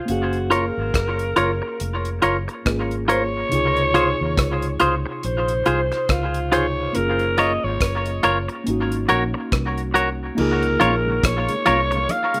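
Sweet and smooth, this lovers rock reggae excerpt sits at a relaxed 70 BPM in Db major, with a lilting swung sixteenth-note feel over chords moving from Gbmaj7 through Dbmaj7 and Ab9sus4 before settling on Db6. A growling alto saxophone carries the melody, its raspy, gritty vintage tone with vibrato colored by tape echo, while a worn, slightly out-of-tune tine electric piano, also touched with tape echo, supplies the accompaniment. Underneath, a foam-muted fingered electric bass sounds dark, round and punchy, and a damped 70s drum kit keeps time with crash cymbal, hi-hat, tight kick and rim click, its cymbals dark and its sound dry and mid-forward. The clean, compressed semi-hollow electric guitar stabs sit up front with a hollow-body character and their own tape echo. At 10.4 seconds, bright, high-tuned congas enter in the background, and at 10.6 seconds a very quiet, lightly overdriven tonewheel organ joins with slow rotary speaker and chorus vibrato. 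The whole has the loose feel of a rough home demo, bathed in a wet studio reverb.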